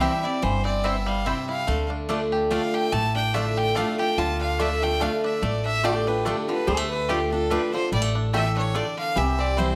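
Rustic and haunting, this short cut from a longer bluegrass piece moves at 144 BPM in a swung 3/4, sitting in D dorian over chords that shift from C to Dm and back to C near the close. A clear, up-front fiddle carries the melody with light vibrato and an airy, intense bow, its tone slightly boxy. Beside it, a bright, full-bodied dreadnought steel-string guitar picks the accompaniment. A twangy, percussive banjo plays arpeggios with fingerpicks, and a round, double-strung mandolin adds picked stabs. An upright bass gives a woody, thumpy pizzicato foundation on dark gut strings. At 4.2 seconds a lap resonator guitar enters in the background with a metallic, nasal slide line, and the ensemble sits in a moderate large-studio reverb.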